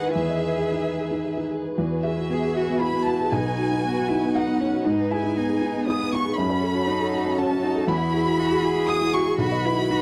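A dry, close recording with a 1970s studio character and light reverb frames this hopeful, tender neoclassical fragment in E major, moving in a rubato 3/4 at 118 BPM. An up-front felt-muted upright piano, mellow and intimate with a vintage tone, carries the accompaniment. A bowed chamber violin section sings the melody with focused vibrato, a single rich cello adds an expressive second line with soft attacks and portamento, and a dark string section holds smooth, even chords in the background as the harmony moves from Emaj7 through Eadd9, B, G#m and F#m before returning to Eadd9 and B.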